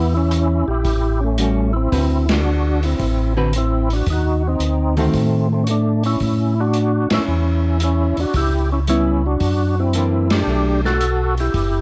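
Greasy and soulful, this soul jazz organ trio swings at 112 BPM in 4/4 with a dark, warm production and light reverb. A percussive tonewheel organ carries the melody through the whole 11.8 seconds, its full, lightly overdriven tone colored by second harmonic percussion, chorus vibrato, a slow rotary speaker and plate reverb. Underneath, a second tonewheel organ plays the bass line up front, round and clean with audible key click and its own slow rotary speaker. A hollow-body archtop guitar, miked and amplified, adds clean picked accompaniment, dropping out at 5.6 seconds and returning at 8.9 seconds. A vintage drum kit sits low in the mix with a muffled, lo-fi small-room sound, dark cymbals on hi-hat and ride, a medium-tuned snare and a tight kick. The band hits accents together at 2.2, 7.0 and 10.2 seconds over chords moving from Em through A6, D13 and D#dim7 to a close on Bm7, in a fragment cut from a longer piece.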